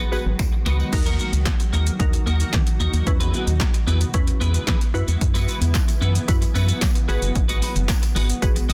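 A punchy analog drum machine drives this bittersweet, energetic dance-pop excerpt at 112 BPM, its up-front kick and soft-clipped snare punching beneath a hollow, organ-like FM bass, a bright, twangy twelve-string electric guitar riff, glassy detuned wavetable plucks, a shimmering ethereal pad, and a jingly tambourine that drops out at 0.9 seconds and returns at 5.3 seconds, all moving through G#m7, D#m, C#m7 and F#7sus4 in a dense, heavily limited mix.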